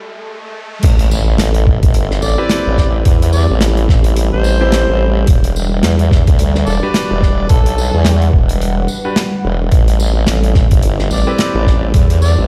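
An overdriven harmonica takes the solo melody in this swaggering, funky glitch hop excerpt, entering at 2.2 s with a gritty, amplified jazz-style voice full of light vibrato, tongue slaps and scooped notes, trailed by a digital delay. It opens with a short break of background electronic riser and swell that leads into the drop at 0.8 s, marked by an impact. Up front, a formant-sweep wobble bass blends sawtooth and sine tones through a formant filter with chorus, joined by a thumpy, compressed, pitched-down sampler kick with tape character. A modern studio drum kit adds polished, airy crash, hi-hat, medium-tuned snare and tambourine with bright cymbals over a swung 4/4 groove. Clear concert grand piano stabs with a smooth, vintage tone pump against the beat and echo through delay, while a dark, detuned analog pad with a sub octave and slow attack sits in the background and also pumps, moving from Am7 to Em7 and back. 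The mix sounds as if played on a big sound system in a bare stone room.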